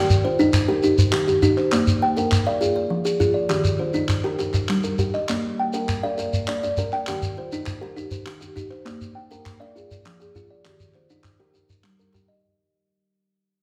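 A straight 12/8 pulse at 134 BPM, felt in dotted quarters, carries this rippling, warm excerpt of southern African traditional music, built on an mbira-style interlocking cycle in Bb mixolydian and tuned to A4 = 435 Hz. Two kalimbas spin arpeggios over a looping Eb, Bb, Fm and Gm progression. One is woody and mellow, sounding from a solid board with a soft fingertip pluck and a vintage, band-limited tone up front. The other gives short notes from a hollow box under a thumb pluck. A grainy, close shekere and crisp group handclaps, which enter at 0.5 seconds, round out the percussion. A reverberant recital-hall ambience surrounds the ensemble as the whole passage fades out across its 12.4 seconds.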